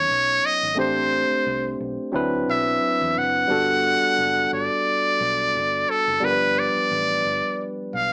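R&B with a neo-soul lean at 88 BPM, this sensual excerpt sways on a gently swung 16th-note feel over chords moving from Badd9 through Am11, D13 and Gmaj9 to G7. A metal-muted trumpet carries the jazz-style solo melody up front, buzzy and thin with light vibrato, a soft attack and scooped notes, while a barky tine electric piano played through a combo amp sits up front beside it. A dark, round, foam-muted fingered bass stays in the background, and the whole take has a small-room reverb and a small-speaker sound.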